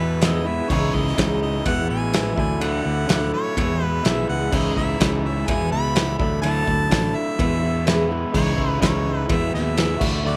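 A warm harmonica carries the melody in a smooth, pop-style voice with light vibrato, floating over a short open-road slice of folk rock and heartland rock in a straight 4/4. Up front beside it, an electric guitar through a small old amp plays a dark, slightly broken-up, lo-fi riff, while a fingered electric bass gives a punchy, amped low end. A loose indie drum kit enters at 0.2 seconds with a fat snare, a punchy kick and dark cymbals, its studio room pumping around the hits. Underneath, a jumbo steel-string acoustic guitar adds a full-bodied picked accompaniment very quietly, and a barky, reedy electric piano with fast tremolo and light overdrive sits faintly in the background. The harmony keeps returning home to E between C#madd9 and Dadd9, and the close, dry sound keeps the whole band feeling near and unadorned.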